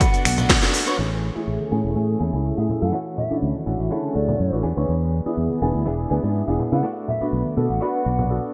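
Sensual and nostalgic, this short cut from a longer piece of filtered disco house moves at 123 BPM in a straight 4/4, tuned slightly low to A4 = 438 Hz. A dark, boxy baby grand piano sits up front with audible action noise and a phaser, voicing chords that move from Bm7 through Amaj7, Dmaj9 and E7 before returning to Bm7. Above it, a hollow, airy jazz flute carries the melody in a tongued straight tone with delay, while a clean, picked electric guitar, recorded direct and compressed, plays a tremolo-treated riff in the background. A round fingered electric bass enters at 0.3 seconds, and the tambourine and congas add soft-handed, band-limited texture throughout. A punchy electronic kick and a layered house kit with cracking snare, crisp hats, cabasa and finger snaps are heard only in the opening second, with a band accent at 0.5 seconds and a filter sweep running from 1.0 seconds to the end. 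The sidechain pumping on the pitched parts, the lush hall reverb and the bright 1980s-style digital sheen give the whole a hazy, breathing glow.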